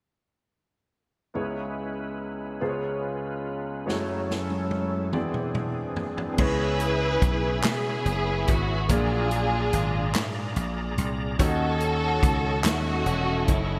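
Slow, fervent and solemn gospel in 6/8 at 48 BPM in C# minor, this piece opens with a clear, intimate baby grand piano, its action noise audible under an analog chorus, alongside a reedy, lightly overdriven tonewheel organ holding sustained chords through a fast rotary speaker with key click. A roomy, distant big-band drum kit with a boomy kick enters with a fill at 3.9 seconds, and at 6.4 seconds a lush, bowed string section takes the melody with smooth vibrato and digital delay, while a punchy, foam-muted thumbed slap bass joins up front. Hollow group handclaps sit in the background from 7.6 seconds, all wrapped in a lush hall reverb and bright 1980s-style digital production over chords moving from C#m7 toward D#m7b5.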